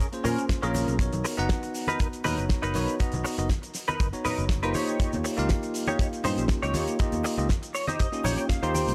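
A dry, gritty hardware recording with transformer saturation and small-room ambience carries this cosmic, sleek nu-disco excerpt at 120 BPM, where an up-front, twangy clean electric guitar with ensemble chorus plays a riff and adds a fill from 7.5 seconds, a bell-like tine electric piano with sidechain pumping and tape echo moves through Bbm7, Bmaj7 and Eb7, a growly picked electric bass punches underneath, a tight kick drum and a damped 70s kit with a fat snare, hi-hat and shaker sit in a small room, and egg shaker and congas played with soft hands ring in the background.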